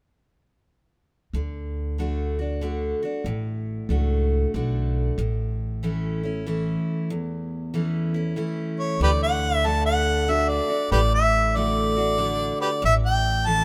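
A swung country waltz in three sets a sunny, nostalgic mood, as a bright, full-bodied picked acoustic guitar and a woody, growly pizzicato upright bass carry the accompaniment from 1.3 seconds. At 8.8 seconds a warm harmonica steps up front with a jazz-style solo full of vibrato, tongue slaps and scooped notes. Light reverb surrounds this short fragment of a longer piece.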